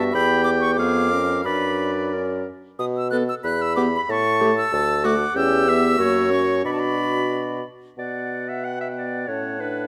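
A mellow, up-front bassoon carries the bass line beneath an airy, straight-toned silver flute melody, with a clear oboe on the second line and a clarinet and dark French horn filling the accompaniment, in a restless, urgent classical-period wind quintet movement in B minor and 2/4 at 88-97 BPM with rubato, captured with close, detailed microphones and moderate scoring-stage reverb in this fragment cut from a longer piece.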